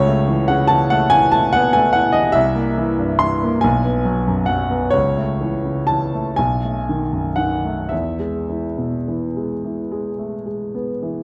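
Rubato in 12/8 at a slow 34-50 BPM on the dotted quarter, this serene, tender romantic nocturne in E major is carried by a solo grand piano, clear and intimate with audible action noise, placed up front across a range from B1 to C6, moving from A/C# through C7 and B7 before settling on E at 7.9 s, all within a moderate concert-hall reverb and a dark production.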